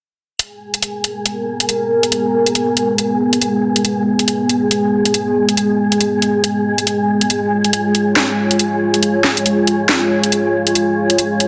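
The recording sits in a lush hall reverb with a dense, heavily limited modern finish, giving this short deep dubstep excerpt a cavernous, meditative air. A garage drum kit starts at 0.4 seconds, its electronic, layered hi-hat and cracking, overdriven snare placed up front with studio reverb, moving at 139 BPM in a half-time 4/4 feel with a 60% swing on the sixteenths. A wind-like tuned noise texture drifts in at 0.6 seconds, breathy and mellow, with a slow attack, long release and its own reverb. From 1.3 seconds a dark analog pad holds sustained chords up front, its detuned sawtooth and sub octave sounding full-bodied and moody, treated with chorus. The harmony rests on G#madd9 in G# dorian before moving to C# at 7.3 seconds, with the tuning set to A4 = 438 Hz.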